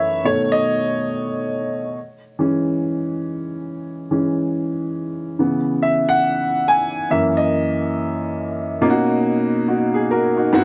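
A warm upright piano opens this smooth, sensual R&B excerpt, playing solo at a relaxed 70 BPM in 4/4 with a lilting swing on the sixteenths. Its woody, natural tone carries a long sustain and sits up front under a light reverb, spanning a broad register from deep bass notes to bright upper tones. The harmony in B major moves unhurriedly through B7, E6, C#m7 and F#6, giving the phrase a lush, intimate sway. At 8.8 seconds the music shifts into a new section that settles on a Bmaj7 chord before the 10.6-second fragment breaks off. The tuning sits slightly under standard pitch, at A4 = 439 Hz.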